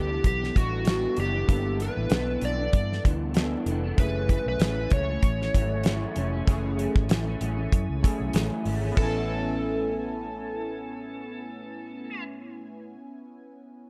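Indie and bedroom pop in A major at 96 BPM, this short, hazy and sunny cut from a longer piece sways with a light sixteenth-note swing over G6 and F#m7 chords before settling on Amaj7 at 9.0 seconds. An overdriven slide guitar played with fingerpicks carries the melody through analog chorus and delay, while a bright, twangy electric guitar through a small old amp and detuned sawtooth analog keys with filter sweep, phaser and cassette-tape colour fill in the accompaniment. Beneath them, a round, foam-muted fingered bass and an up-front, damped 70s drum kit with a fat snare, tight kick and dark cymbals anchor the dry, dark production, with the drums stopping at 9.1 seconds.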